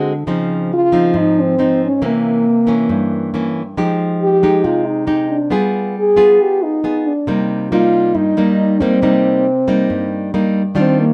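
Bossa nova in C minor at 137 BPM, smooth and melancholic, this short passage cut from a longer piece sets a dark French horn melody with light vibrato and a smooth top, played in a classical style, over fingerpicked nylon-string guitar with a warm, classical tone, both up front for the full 11.1 seconds. The guitar moves through rich extended chords, from Dbmaj9 through C7b9, Fm9 and G7b9 to settle on Cm7. The duo sounds like it is playing live in one room, bathed in a wet studio reverb.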